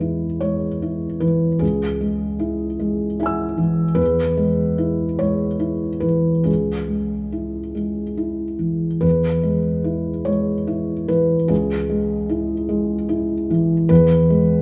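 A felt-muted upright piano, dark and intimate with thick felt and audible action noise, sits up front alone in this tender, hopeful neoclassical minimalist fragment cut from a longer piece, drifting in a rubato 6/8 at about 46-51 BPM in E major as it moves between E and C#m over its 14.6 seconds, with a moderate scoring-stage reverb around it.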